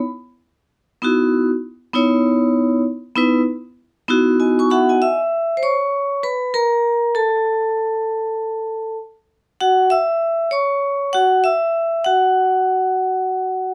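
A dark, mellow production in a small room sets a lone vibraphone, played with hard mallets and motor off, bright, metallic and ringing up front, through a smoky hip hop groove at 98 BPM with a swung feel in C# minor, moving from C#m9 through Aadd9, F#m and C#madd11 before its solo stretch from 5.0 seconds lets the chords fall away at 12.4 seconds in this brief cut from a longer piece.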